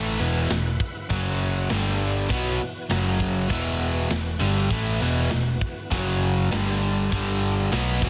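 A bright, up-front overdriven semi-hollow guitar drives the riff in this aggressive hard rock excerpt, joined by a double-tracked overdriven electric guitar and a sludgy distorted guitar set in the background, over a dark, round hollow-body short-scale bass, a tight metal drum kit in a big room that joins at 0.2 s with a softly clipped kick, and a very quiet, gritty tonewheel organ holding thick sustained chords through a slow rotary speaker, all sealed in a dense, heavily limited modern master.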